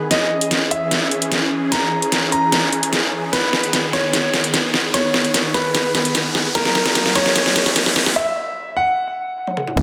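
A brilliant, polished grand piano carries the melody through dub echo in this aggressive, heavy half-time wobble dubstep build-up, set over huge, detuned supersaw chords that pump under a phaser and a sweeping low-pass filter across C#m, G#m and F#add9. Up-front, overdriven drums with a deep snare play a fill while an electronic riser climbs in the background, then a break arrives at 8.2 seconds. At 9.8 seconds a punchy electronic kick hits alongside a saturated, chorused wobble bass on a low G#1, all soaked in a lush hall reverb under a dense, heavily limited master.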